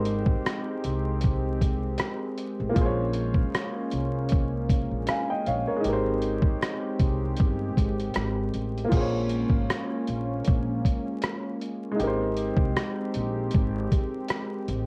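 A woody upright piano, a detuned sawtooth analog pad with chorus and a dark pizzicato upright bass on gut strings open this melancholic, nostalgic lo-fi hip hop excerpt together, joined at 0.1 seconds by a gritty, compressed sampler-style drum kit with a thumpy kick, hi-hat, rim click and crash cymbal, the whole mix softened by light reverb, vinyl crackle and the warbling pitch drift of worn cassette tape as the swung groove moves between Abmaj7 and Bbm9 chords.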